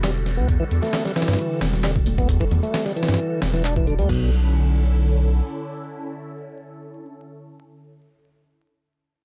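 A straight 4/4 breakbeat groove at 133 BPM drives this funky, raw breaks cut in B minor, built on a dusty soul sampler-style drum kit with a thumpy kick, fat snare, hi-hat and crash, compressed and gritty and sitting up front until 4.2 seconds. Overdriven electronic handclaps and tambourine ride beneath it, and quiet congas with hard hands appear briefly from 1.6 to 2.6 seconds. A deep, thick saturated sub bass with a fast attack holds down the low end from E1 to G2, while a tonewheel organ plays a riff with key click and vibrato through a stopped rotary speaker, colored by tube saturation and tape echo. Over an Em11 chord that shifts to Bm11 at 4.1 seconds, a swirling, detuned sawtooth pad sustains chords with a slow attack and long release, treated with phaser, chorus, sidechain pumping and vintage 12-bit sampler grit, and it carries on alone to 7.3 seconds after the other parts fall away. 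The sound is dry, with little reverb and vinyl crackle, like a gritty hardware recording cut from a longer piece.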